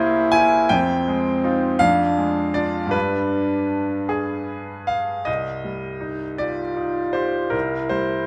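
Elegiac and melancholic, this short romantic classical passage in C minor moves at a slow, rubato 53 BPM in 6/8, with a soft-attacked, smooth-topped French horn carrying the melody in its low-middle range over a grand piano accompaniment. The piano sits up front, bright and brilliant with long sustain and audible action noise, tracing a harmonic path from C7 through Fm7 and a diminished chord to G and C minor before turning back to C7. Close, detailed microphones capture the pair in a moderate recital hall reverb that gives the 8.3-second fragment an intimate yet spacious finish.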